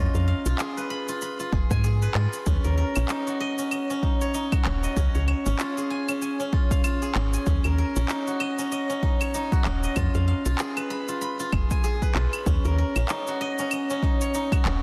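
Lightly reverberant and densely, heavily limited, this organic downtempo excerpt from a longer piece has an earthy, warm mood, moving at 96 BPM in 4/4 in Eb minor, with a 58% swing on the sixteenths and tuning set to A4 = 441 Hz. Up front, a bright, silvery steel-string zither played with fingerpicks rings out in arpeggios, its notes carried by a delay. Beside it sits a woody, round FM bass with a fast attack and a mellow, decaying tone, pumping under sidechain compression from the opening second. Electronic cabasa, handclaps and claves tick along underneath, and at 1.5 s a layered, punchy electronic kick drum with overdrive joins them. The harmony cycles through Fdim, Ebm7 and Db before the music shifts into a new section on Ebm7 at 12.5 s, running until the cut at 14.8 s.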